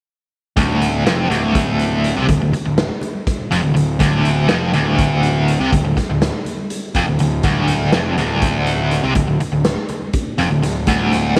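Psychedelic rock in D minor at 245 BPM in a straight 7/8, hypnotic and trippy, built on a low, double-tracked overdriven electric guitar riff with tremolo that sits up front over a single Dm chord from 0.6 s. A dark, round fuzz bass with punchy overdrive and a gritty, saturated garage drum kit with a punchy kick and rolled-off top drive it along, while very quiet thin-skinned congas play until 11.2 s. The whole section swims in a moderate echo-chamber reverb, and the clip is cut from a longer piece.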